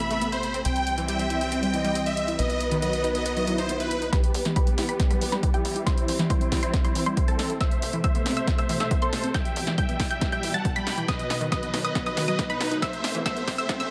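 Opening on huge, airy supersaw chords that pump against the beat, with a dark, woody violin section, smooth bowed symphonic strings, a detuned unison pluck arpeggio, a tight sawtooth sequencer bass and a tape-warm drum machine's hats and snare, this soaring, bittersweet uplifting trance excerpt brings in a punchy, up-front kick drum and a round analog pluck second line in the background at 4.1 seconds as the violins drop away, then builds under filter sweeps, a drum fill and a faint riser, all in a lush hall reverb.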